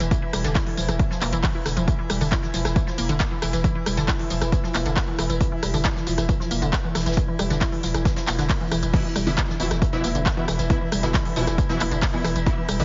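Heavily compressed and boxed in like a radio broadcast, with its top end capped and only a light reverb around it, this driving peak-time techno excerpt feels intense from the first beat. A punchy electronic kick sits up front, re-recorded in a small room alongside a layered techno kit of smooth hats, handclaps, rim clicks, tambourine and crash cymbal, whose hats, cymbals and percussion pump against the sidechain. Far behind them, a very quiet acoustic brush kit adds distant, roomy hi-hat and a fat snare. A thick, saturated sine sub bass holds a single low note under overdrive and a low-pass filter, while a juicy, squelchy blip pluck plays a resonant riff through analog chorus and dub echo, both pumping with the kick. An eerie, metallic FM drone hangs in the background with slow attack and long release, and at 8.9 s an aggressive, warbling rave stab arrives, bright and vintage, with a filter sweep, chorus and digital delay.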